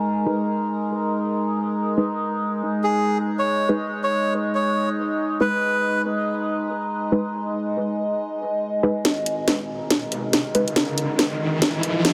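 A resonant, overtone-sweeping sawtooth drone with chorus, built-in reverb and 12-bit sampler grit broods up front through this dark deep dubstep excerpt in G# minor at 140 BPM with a half-time feel, joined by muted, detuned dub chord stabs under a filter sweep and dub echo, a brief reedy, breathy melodica line from 2.8 seconds, and a build-up from 9.0 seconds where a cracking, layered garage drum kit fill and a very quiet, thick saturated sub bass enter before an electronic riser arrives at 10.1 seconds, all heard through a heavily compressed, radio-like sound.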